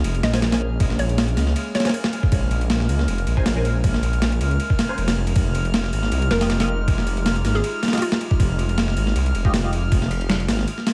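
A gritty, overdriven breakbeat kit with a thumpy kick, snare and ride drives this nostalgic, frenetic jungle and drum and bass excerpt from the first beat, sitting up front beside a thick, menacing detuned saw bass, while a warbly tape-like pad, a glassy drifting-harmonics texture and a muted, phaser-treated dub chord stab hover in the background. A hollow, bouncy square pluck with chorus and dub echo carries the melody in two brief phrases, at 0.2 and 6.3 seconds, as the harmony shifts from Bbm7 to Fm9. Vinyl crackle and light reverb lend the swung groove a dusty, worn character.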